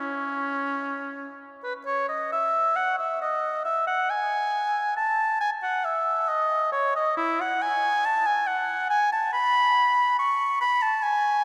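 Flowing and radiant, this brief fragment of a longer classical work is a baroque-style fantasia for oboe alone, moving in a loose, rubato three-beat metre. The oboe carries the entire piece as a solo voice, ranging from C#4 up to C#6, with a warm tone, light vibrato and a soft attack rooted in classical style. It is close-miked and placed up front, so its detail stays intimate and present. That close sound sits inside a lush cathedral reverb whose 5.0-second decay lets each phrase bloom and linger in the stone space. A short opening idea gives way at 1.9 s to a longer passage that continues until the fragment breaks off at 11.4 s.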